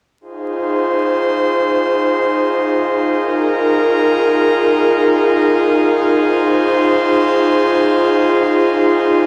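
Wrapped in vinyl crackle and a lush hall reverb, this atmospheric, nostalgic drum and bass excerpt holds a single breathy, detuned pad with chorus, sustaining up-front chords with a slow attack and long release from 0.2 to 9.3 seconds.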